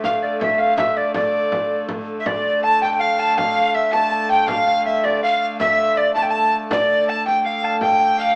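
A breathy, mellow soprano recorder leads this ancient, driving medieval dance in D minor at 108 BPM in 6/8, its chiffy, vibrato-laden melody up front over a ringing fingerpicked Celtic harp, a nasal wheel-bowed hurdy-gurdy drone and soft-handed frame drum, with a bright, reedy tenor recorder joining on a second line at 2.2 seconds, all heard live in one room through wet studio reverb with a small-speaker sound in this fragment cut from a longer piece.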